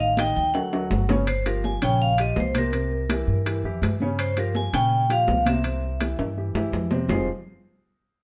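A bright, metallic vibraphone with fast motor vibrato carries the melody up front in this driving, fiery Afro-Cuban jazz excerpt at 165 BPM, over a natural-sounding baby grand piano and a dark, woody, thumpy pizzicato upright bass on gut strings. Ringing metal-shell timbales and soft-handed, high-tuned congas in the background join at 0.2 seconds, with drum fills at 0.5 and 6.2 seconds. The harmony turns between Gm7b5 and C7 before landing on Fm9 at 7.1 seconds, all in a moderate studio reverb.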